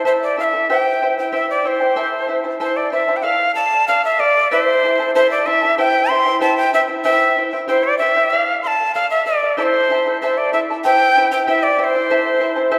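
In a straight 2/4 pulse at 95 BPM, this Andean folk passage moves with a festive, earthy spirit in A minor, tuned slightly low to A4 = 438 Hz. A bright cane quena carries the melody from start to finish, its end-blown tone airy and touched with vibrato, each note opening with a crisp, chiffy attack and a slightly unsteady, human wobble. Beneath it, a fingerpicked acoustic charango supplies the accompaniment throughout, its double courses shimmering, with some strings doubled at the octave. Both instruments sit up front, the quena a touch more prominent, while the harmony circles among Am, C and Dm and comes home to Am at 12.1 seconds. A generous, wet reverb with a long 2.0-second tail wraps the pair in the resonance of a church or concert hall, and the 12.8-second excerpt is cut from a longer piece.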